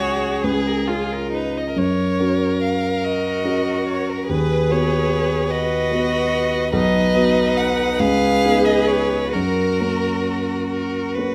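A dark, mellow baby grand piano sits up front in this tender, lyrical fragment of a slow romantic movement for piano quartet, unfolding in 6/8 around 43-50 BPM with a free rubato feel in F# major. Above it a close, warm violin sings the expressive melody with vibrato and portamento until 10.7 s, while a rich-toned, soft-edged second violin and a focused cello weave inner lines. A moderate recital hall reverb surrounds the detailed sound as the harmony moves from C# through F#, B/D#, B and C#9 before settling on F# at 9.3 s.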